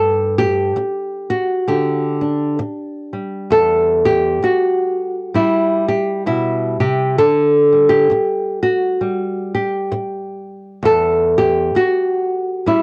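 A fingerpicked nylon-string guitar opens on a G5 chord and plays alone throughout this intimate, reflective folk fragment, moving at an unhurried 66 BPM in 4/4 with a gentle swing on the eighth notes. Its small, up-front tone spans E2 to A4 and passes through Em, Dsus4 and finally Emadd9 at 10.8 seconds. The guitar carries the soft grain of cassette tape, and the home recording sits in a modest booth ambience with a short decay.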